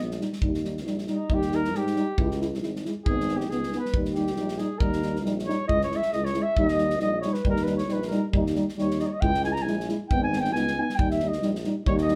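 Restless and virtuosic, this Balkan brass band passage in swung 2/4 puts a mellow flugelhorn up front, playing a classical-style solo with vibrato from 1.1 s over chords that move between Eb, Dbm and Abm. Beneath it a warm tuba with light vibrato holds the bass between Ab1 and Ab2, and a pair of euphoniums adds accompaniment with vibrato, one lower and the other higher with a vintage tone set in the background, while an acoustic drum kit in a small room supplies a punchy kick and medium-tuned snare. A wet studio reverb sets the band further back in the room, giving the tuba and flugelhorn a distant, roomy sound.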